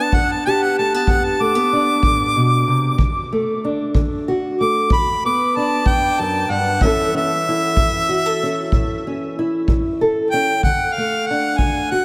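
Soulful and swaggering, this short cut from a longer acoustic country blues piece in a slow 12/8 sway sets a warm, up-front harmonica soloing with light vibrato, scooped notes, soft attack and tongue slaps in a jazz style through diffuse ambient delay until 10.6 seconds, over a dark, boxy fingerpicked parlour steel-string guitar and a punchy, natural kick drum played with brushes, all drenched in a huge, dreamy reverb.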